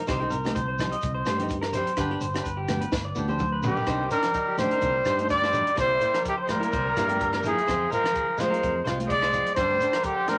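Warm and bittersweet, this short highlife guitar-band cut from a longer piece moves at 126 BPM in C minor, with a light sixteenth-note swing. An electric guitar through a small old amp opens at once with compressed, slightly broken-up arpeggios bathed in spring reverb, joined almost immediately by a bright, fingerpicked flamenco guitar, a direct fingered electric bass and a compact cocktail drum kit with a high-tuned snare and punchy kick. In the background sit a grainy, close shekere and distant, thin-skinned congas played with soft hands. After a drum fill from 2.9 seconds, a breathy, whispered trumpet steps up front at 3.7 seconds with a mellow, jazz-style melody and vibrato, while a raspy, growling tenor saxophone traces a second line further back. The harmony moves from Cm and G into a Cmadd9 and C7 before settling on Fm and a hanging Gsus4. A wet club reverb and a layer of vinyl crackle envelop the whole.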